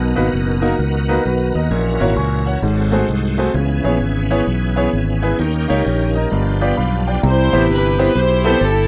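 This is a short excerpt of uptempo gospel at 130 BPM in 4/4, swung on the eighth notes, with a soulful, fervent mood. A clear baby grand piano sits up front as accompaniment through nearly the whole clip, intimate and natural with long sustain and audible action noise. A fingered electric bass carries the low end with a round, amped tone, while a bright tonewheel organ holds sustained chords, its shouting sound lightly overdriven and spun through a fast rotary speaker with chorus vibrato, until it stops at 7.2 seconds. At that point the harmony moves from a chain of seventh chords starting on Bmaj7 to Cmaj7, and a dark studio string section enters with the melody, bowed with light vibrato and a reedy, gut-string, period-style tone. The recording is dry and close in a 1970s studio style, with light reverb, and the clip is cut from a longer piece.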